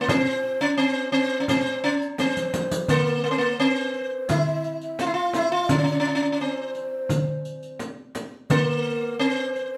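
Arabic maqam ensemble music in C maqam hijaz, a longing, melancholic excerpt at 86 BPM in a straight 4/4, with a bright, buzzing sitar up front carrying the melody while a breathy, hollow ney holds a second line above it. Soft-handed frame drum and a riq with dark jingles begin at 0.1 seconds, and after a drum fill at 2.2 seconds a small, high clay darbuka played with hard hands joins at 2.9 seconds. The band plays live in one room, with a wet studio reverb that lends the shimmering sitar and the close-miked ney some space.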